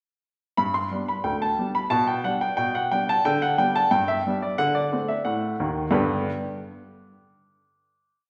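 In a straight 2/4 stride bass, a lively, playful ragtime piece for solo upright piano sounds woody and close up front, its single-line melody carried over short-sustained notes from 0.6 s until the final G chord at 5.9 s rings into the wet reverb of a recital hall.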